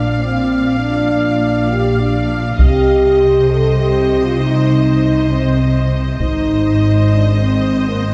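Majestic and heroic, this brief excerpt of an epic orchestral film score moves at 100 BPM in a stately 3/4, with chords shifting from Bb to Cm at 2.6 seconds and to Ab at 6.2 seconds. A clear, distant violin section carries the melody with vibrato over a second violin line with a smooth top, while lush violas, rich cellos and double basses fill out the harmony and bass, and an up-front, mellow French horn section holds sustained chords. A close, dry taiko ensemble struck with heavy sticks enters at 2.6 seconds and stops at 7.4 seconds, all set in a dark production with a scoring-stage reverb.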